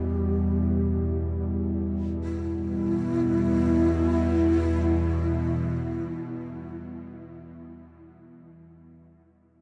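Cavernous and dark, this ambient drone fragment unfolds in free time inside a huge, wet reverb with an 8.1-second tail. Up front, a low, tense bowed-like drone with a string-like sawtooth edge, noise layer, vibrato and phaser sits beneath a deep, moody analog pad of detuned, sub-octave chords that slowly evolve through chorus. A breathy, hollow shakuhachi carries the melody with audible chiff and vibrato, its end-blown bamboo tone also up front and trailed by tape echo.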